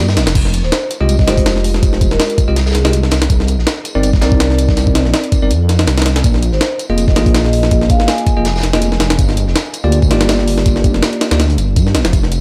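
Drum and bass with a jungle edge, this raw, dark 163 BPM excerpt in F dorian drops in at 0.4 s over Fm9, Cm9, Bb7sus4 and Gm7. An up-front, thumpy, pitched-up sampler-style jungle kit with a high-tuned snare rides over a crunchy, saturated breakbeat kit that sits filtered in the background. A rumbling detuned saw bass growls beneath, bell-like tine electric piano stabs carry dub echo, and a mellow soft-mallet vibraphone, also echoed, surfaces from 0.6 s and again at 6.5 s, all in a gritty small-room sound.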